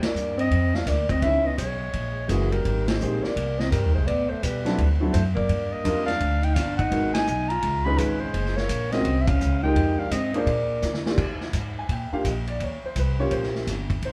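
Relaxed and playful, this small-group swing and bop excerpt moves at 169 BPM in Eb major, with a mellow, scooped clarinet carrying the melody over a smooth, punchy alto saxophone second line until both stop at 11.0 seconds. An up-front, woody upright bass and a gritty vintage drum kit with dark cymbals drive the swing, marked by band accents and a drum fill just before 11.2 seconds, while a natural-toned grand piano joins the accompaniment at 1.2 seconds. A wet club reverb places the group further back in the room, and the cut closes with the bass, drums and piano alone.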